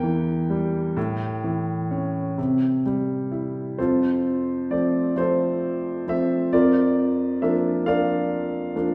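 Calm and warm, this short classical passage for solo grand piano unfolds in 6/8 with free, rubato phrasing, cut from a longer piece. The piano sounds intimate and slightly boxy, with audible action noise and long sustain, spanning from E2 up to G5 and settling onto an F chord at 3.8 s after opening on a diminished harmony. A wet recital hall reverb surrounds the instrument, lending a gentle sense of space.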